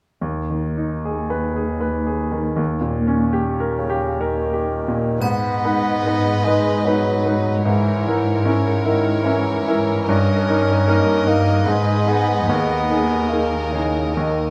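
Brooding and passionate, this short cut from a longer Romantic movement for piano and orchestra unfolds in G# minor in a flexible, rubato 3/4, drifting between roughly 55 and 80 BPM. A bright, brilliant grand piano carries the melody up front with a vintage character and long sustain, set over a dark, woody cello section that plays sul tasto with vibrato in the bass. A clear, classical-style solo bassoon joins with accompaniment at 3.8 seconds. At 5.2 seconds the music moves into a new section: a rich violin section adds a soft-attacked second line with light vibrato, a very quiet viola section fills in beneath it with a smooth top, and a triangle adds a brief shimmer. Light reverb and close, detailed microphones give the strings an intimate feel as the harmony passes through G#m, D#7 and A#m7b5/G# before settling on a D#sus4.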